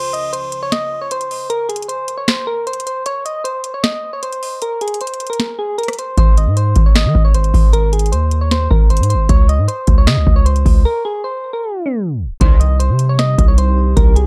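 Dark, dry production frames this brooding, hard-hitting half-time trap at 154 BPM, where soft, round electric-piano-like synth keys with chorus and tremolo carry the melody over a booming analog drum machine of deep kick, crisp snare, rim click and metallic hats; a punchy, heavy 808-style bass arrives at 6.2 seconds, a tape stop leads into a brief glossy chorused polysynth stab at 12.4 seconds, and a deep, warbling ambient pad settles into the background at 13.3 seconds.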